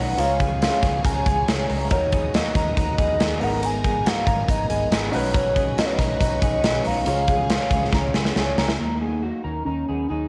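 A warbling, detuned synth lead carries the melody from the first moment over shimmering, octave-doubled twelve-string fingerpicking, a woody upright piano with audible action noise, lush string-machine chords, a round, foam-muted electric bass and a slightly broken-up electric guitar playing arpeggios through analog chorus, opening this restless, bittersweet stretch of jangly indie pop in Eb minor at 139 BPM. A big-room rock kit with a punchy kick enters at 0.2 s, sitting up front, and a drum fill from 7.9 s leads into a new section at 8.8 s, where the piano, strings and drums drop out while the lead, both guitars and bass carry on. The home cassette recording, with light reverb, gives the piece a homemade character.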